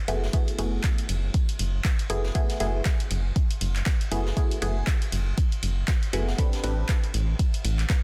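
A swung 16th-note groove at 119 BPM in 4/4 drives this hypnotic, smooth deep house excerpt in F# minor, where a deep electronic kick enters up front at 0.3 s beside a rubbery, hollow square-wave bass, overdriven analog drum-machine handclaps and hi-hat captured in a large room, and a dark, brushed acoustic kit of ride cymbal and snare, while muted, detuned sawtooth dub chord stabs with phaser, tape echo and sidechain pumping move from F#m11 to Am11 at 6.4 s before stopping at 6.9 s, inside a dense, heavily limited master with little reverb.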